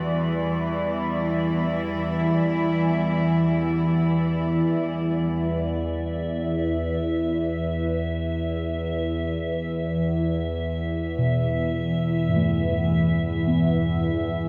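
Ominous and dark, this dark ambient drone floats in free time around E minor, a short cut from a longer piece. An overtone-sweeping drone sits up front for the full 14.5 seconds, its sawtooth and sine layers resonant with moving overtones, slow attack and long release, colored by chorus, phaser and its own reverb. A chamber cello section joins it at the start with sustained, bowed chords in a nasal, reedy gut-string tone with light vibrato in period style, also up front, before falling away at 5.7 seconds. Gamelan-type bossed gongs play bronze, beating arpeggios through analog delay at the opening and return at 11.2 seconds, their sound round and smooth. High above, a quiet, icy glass pad adds crystalline, airy texture throughout, detuned in unison with a noise layer, chorus and its own reverb. The whole is set in a wet echo chamber with a 2.6-second decay, giving an echo-heavy mix.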